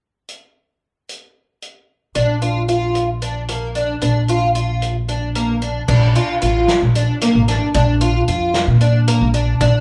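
Driving along in an uneven 7/8 with a straight feel, this intricate progressive instrumental excerpt opens with a dark-cymballed acoustic drum kit of crash, hi-hat, tight kick and snare playing alone from 0.3 seconds, before a boxy, shimmering, octave-doubled twelve-string acoustic guitar enters at 2.2 seconds with up-front picked arpeggios coloured by analog chorus and slapback echo, joined at the same moment by a woody pizzicato upright bass, all heard as a live gig through the venue's PA with club reverb and lossy compression artefacts.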